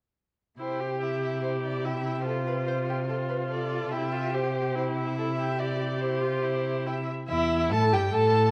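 Heard through worn, warbling old cassette tape with drifting pitch and a moderate recital hall reverb, this lively, cheerful cut from a quick classical-period string quartet movement in C major at 143 BPM sets a focused, distant first violin melody played with vibrato over an expressive second violin line with portamento, a rich, up-front viola accompaniment and a smooth, even cello bass played close, all four bowed parts entering together at 0.6 s and moving from C through Dm7/C before shifting to Emadd11 at 7.3 s.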